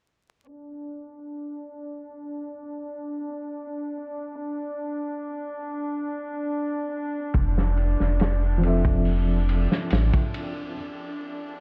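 A rich chamber string section opens at 0.5 seconds, holding sustained chords with a reedy, gut-string tone and light vibrato, set distant in the mix of this cinematic, hypnotic trip hop excerpt. At 7.3 seconds a round analog bass and a loose indie drum kit arrive together on an Fmaj7 chord, the bass deep and up front, the kit gritty and saturated with a fat snare, punchy kick, hi-hat and ride cymbal. A felt-muted upright piano follows at 8.6 seconds as soft, mellow accompaniment, its audible action noise giving it an intimate feel, colored by tremolo and tape echo. The production is dark, with studio reverb, vinyl crackle and a low-pass filter, and a filter sweep runs across the whole passage. The piano stops at 10.8 seconds as a brief break begins, leaving the strings sounding until the cut.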